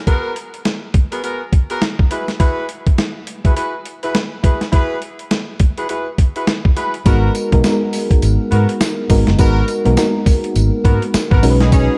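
Slick and punchy, this new jack swing R&B excerpt moves at 103 BPM with a 16th-note swing in G# minor, where a gritty, overdriven sampler-style drum kit with a thumpy kick, tambourine and hi-hat sits up front beneath tight, mellow horn stabs with light vibrato over G#m9 and F#9sus4. At 7.1 seconds a round, foam-muted fingered electric bass and a soft FM electric piano with a warbling chorus and a noise layer join in, carrying the harmony back to G#m9 before a closing B69. The production is dark, with light digital reverb.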